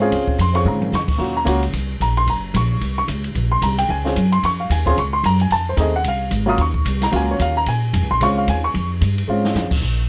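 Dry, closely miked and detailed, this smoky, swinging small-group jazz fragment in Bb minor races along at 222 BPM, with a dark, mellow baby grand piano accompanying up front with audible action noise, a woody, thumpy pizzicato upright bass on gut strings, and an open drum kit with dark cymbals and a boomy kick that adds fills at 0.7 and 9.3 seconds.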